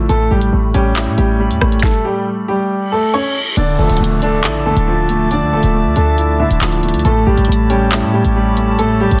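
Tense and dark, this half-time drill excerpt pairs a clear, boxy concert grand piano melody, its action noise audible up front, with a baby grand's long-sustaining accompaniment, while a punchy, tight 808-style bass and an electronic drum kit with knocking kick, sharp snare, crisp hats, rim clicks and handclaps drive from the start. A reverse cymbal rises in the background at 2.9 seconds, and at 3.6 seconds a warm, classical-style brass section enters with sustained chords as the harmony moves from A7 to Dmadd9. The dense, heavily limited mix carries light reverb.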